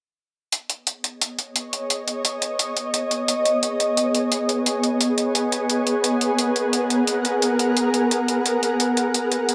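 A gritty, pitched-up electronic hi-hat opens this lush liquid drum and bass at 174 BPM in B major, and at 1.6 s an ethereal, detuned pad with chorus and an octave-up shimmer joins up front with sustained chords moving from B6/9 to G#m9 at 5.9 s, all set in a moderate scoring-stage reverb.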